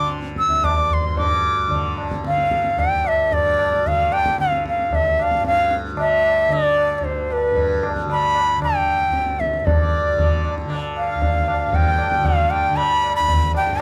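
Close, detailed microphones and a light reverb give this Hindustani classical fragment an intimate, clear sound. Set in raga Bageshri on D in a straight 4/4 at 114 BPM that gradually speeds up, the music feels meditative and introspective. An airy, bright bansuri sits up front carrying the melody, its bamboo tone reedy, with a soft attack and vibrato. Beneath it, a softly plucked tanpura holds a buzzing, shimmering drone in the low register. A low-tuned, ringing tabla sounds distant, as if heard across a large room. A mellow, dark pedal harmonium breathes a second line in the background, dropping out at 1.3 seconds and returning at 9.8 seconds to play through to the end at 13.8 seconds.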